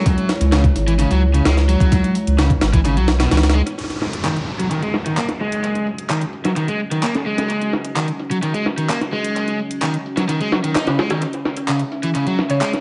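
Echo-heavy and dusty, with vinyl crackle and a dulled top end, this gritty, raw breakbeat excerpt rides a compressed, pitched-up sampler kit with a thumpy kick and high-tuned snare, layered with a fainter electronic garage kit of handclaps and hi-hat. Up front, an overdriven semi-hollow guitar plays a picked riff over a dark, detuned sawtooth pad carrying sidechain pumping and 12-bit grit, while a thick, saturated sub bass sounds only until 3.6 seconds and a downlifter passes through from 3.8 to 7.5 seconds. At 12.5 seconds a bouncy square pluck with an old-record tint sounds a single note.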